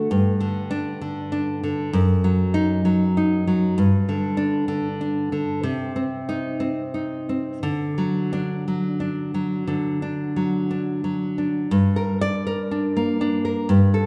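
Passionate and wistful, this romantic excerpt for solo classical guitar unfolds in G minor at a rubato 57-67 BPM in 4/4, its fingerpicked nylon strings sounding fresh, deep and up front within the wet glow of a recital hall, with its harmony moving through Cm and D before settling on Gm as a new section opens at 11.7 seconds.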